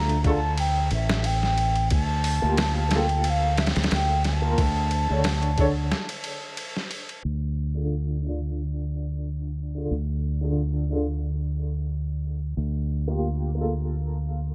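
A distant wooden flute with gentle vibrato opens this melancholic, brooding trip hop excerpt over a felt-muted upright piano, softened by tremolo, tape echo and a low-pass filter, and a fingered electric bass that sits direct and up front, while a gritty, pitched-down boom bap drum kit with a thumpy kick and a reverb-touched snare enters at 0.1 seconds on a lightly swung groove. A break arrives at 5.9 seconds; the flute stops at 6.5 and the drums at 7.2. From there the intimate, short-sustain piano, bass and filtered digital ambience carry on alone as a filter sweep moves across the piano.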